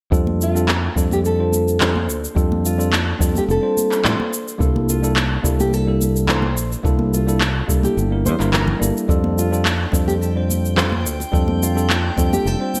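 A growly, punchy fingered electric bass sits up front with tube saturation, anchoring this smooth, blissful sunset chillout excerpt in a straight 4/4 groove. A deep analog-style electronic kick drum and layered, overdriven electronic shaker and handclaps, treated with gated reverb and re-recorded in a large room, drive the beat. Bright, high-tuned congas played with soft hands stay close and dry in the background. A clean tine electric piano through a combo amp carries the accompaniment with delay, while a fingerpicked classical nylon-string guitar with fresh strings takes the melody, colored by vintage 12-bit sampler grit and its own delay. At 9.9 seconds a glassy, drifting harmonics texture with slow attack and long release enters high above, softened by chorus and built-in reverb, over chords moving from F69 to C13 and back. The bright 1980s-style digital production keeps the room light.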